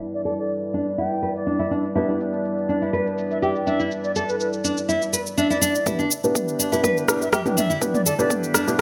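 A fingerpicked nylon-string guitar, full-bodied and up front, runs arpeggios through this hypnotic, spiritual afro house excerpt at 123 BPM in E minor pentatonic on an Em7 chord, alongside a felt-muted upright piano's mellow stabs with dub echo, a bright reedy bansuri melody with vibrato, a dark detuned analog pad pumping under sidechain, and a layered deep house kit of rim click, shaker and toms, while filter sweeps move over guitar and piano before an overdriven electronic kick enters at 5.9 s for a build-up and drum fill, all set in a lush hall reverb.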